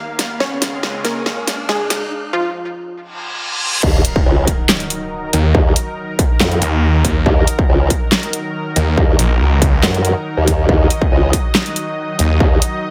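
Chaotic and menacing, this half-time heavy wobble dubstep cut opens with a punchy, detuned unison pluck melody over a lush, warbling chorused pad, a riser and a drum fill building toward the drop at 3.8 seconds, where an impact hits, a distorted electronic kick and formant-sweep wobble bass arrive up front, and a snarling, growling saw bass joins at 5.3 seconds alongside the huge snare and bright hats of the tape-warm dubstep kit.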